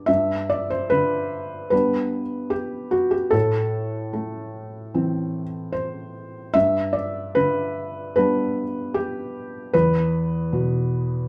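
A felt-muted upright piano plays alone from the start in this peaceful, hopeful neoclassical minimalist fragment, its intimate, mellow tone sitting up front with audible action noise and short sustain, moving in an unhurried rubato through G, Am, G and an E5 close across a range of E2 to E5, set in a wet studio reverb that gives it a gentle room glow.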